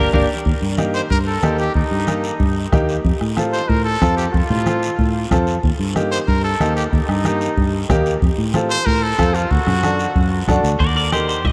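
A long cathedral reverb places this passionate, danceable cumbia fragment in a vast, echoing space, cut from a longer piece and moving at a brisk 186 BPM in straight 4/4. The full band opens with a short accent. From 0.5 seconds a punchy, vibrato-laden trumpet takes a pop-style solo, sitting present and forward over harmony that moves between Eb and F before touching D. A brilliant, woody upright piano supplies polished accompaniment, while a round, foam-muted fingered electric bass anchors the low end. The percussion pairs a close, soft-beater bombo with very quiet, damped, low-tuned congas and a raspy guiro, both heard in a small-room setting. A twangy, compressed clean electric guitar carrying spring reverb and slapback echo appears only in brief moments, at the start and again from 10.8 seconds as the trumpet solo ends.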